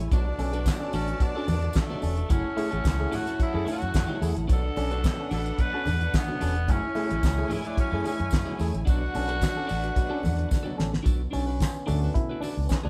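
A straight 4/4 disco groove with a sultry, glamorous mood rides on a dry, damped 70s drum kit with fat snare, tight kick, handclaps and hi-hat, alongside a punchy envelope-filtered fingered bass up front, very quiet low-tuned congas and a jingly tambourine, while a breathy, raspy tenor saxophone carries the melody over Bm7 and F#m9 chords, backed by an auto-wah clav, a twangy, slightly broken-up electric guitar with phaser, a lush string section and a distant, dark French horn section holding sustained chords, until a drum fill at 10.5 seconds leads into an overdriven clav solo from 11.1 seconds in this excerpt cut from a longer piece.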